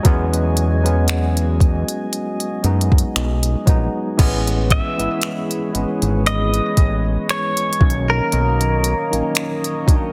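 A bright, twangy clean electric guitar with tape echo enters at 4.7 seconds to carry the melody in this romantic, dreamy contemporary R&B excerpt, riding over an up-front electronic drum kit of kick, smooth hi-hat, finger snaps and crash with soft clipping on the snare, a fat sawtooth analog bass, a worn, barky, lightly overdriven tine electric piano, and a shimmering chorused pulse-width pad sustaining major-ninth chords in a dry, dense, heavily limited mix.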